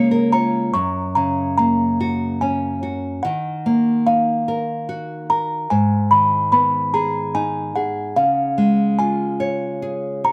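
A short fingerpicked fill on nylon-string guitar opens this gentle, sleepy lullaby in 3/4 at 73 BPM in F# major, and a delicate, tinkling music box enters at 0.3 seconds to carry the melody high above. The up-front guitar keeps a warm accompaniment through a progression from C#6 to F#, D#madd9, G#m and C#. The close, detailed recording carries little reverb, so the small mellow box and the warm acoustic strings sound near and clear in this fragment of a longer piece, slightly tuned to A4 = 439 Hz.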